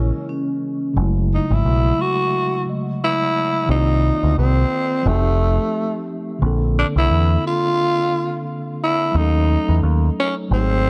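A ringing vibraphone opens this mellow, cool hip hop piece alongside a growling, breathy tenor saxophone, a clean tine electric piano and a deep, round dub bass, with the vibraphone falling away at 0.9 seconds. At a swung 88 BPM, the raspy saxophone carries an up-front jazz solo full of scooped notes and vibrato, while the electric piano accompanies through chords such as F#m9, Cm11 and A#maj9#11. The punchy bass sits forward in a dark production.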